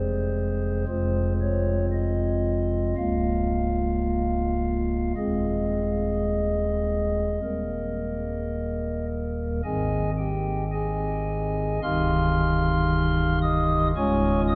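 A pipe organ on a stopped flute stop opens on an F minor chord, its soft, hollow tone sitting up front in a dark, cavernous cathedral space whose long reverb lets every chord hang in the air. This is a serene, reverent chorale-style piece in A-flat major, moving at a slow 55 BPM in 4/4 with a rubato feel that lets the beats stretch and settle unevenly. The solo organ spans a broad range from deep pedal tones to high, mellow flute notes, with romantic voicings that give the harmony a tender glow. The harmony moves from F minor through B-flat minor seventh and an A-flat chord over E-flat before resting on E-flat major. At 9.7 seconds a new passage begins on A-flat, passing through C minor to D-flat. The recording is cut from a longer piece, ending at 14.6 seconds.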